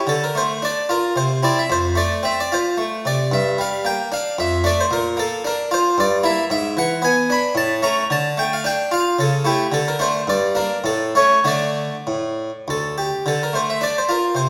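Solemn and grave, this short cut from a longer baroque-style suite movement in D minor features a solo harpsichord with a round, French-style plucked tone on a single set of strings, placed up front and spanning D2 to B5 at a 112 BPM triple metre with a rubato feel, moving through a harmonic path from Dm via Gm, Bb and Em7b5/G to E7/G# and A before settling back on D minor by 13.3 seconds, all bathed in the wet reverb of a recital hall.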